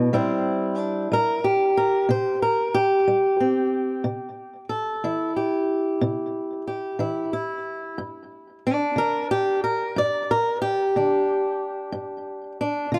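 A fingerpicked acoustic guitar carries this soulful, gritty piece of acoustic country blues alone, its boxy tone sitting up front and touched by tape echo. The playing is swing-style, moving at a slow 61 beats per minute in 12/8 with a straight feel, and the guitar ranges from G2 up to D5. The harmony rests on C before shifting to G5 at 8.0 seconds. The production is dark and warm with light reverb, and the instrument is tuned to A4 = 436 Hz. This short 13-second section is cut from a longer performance.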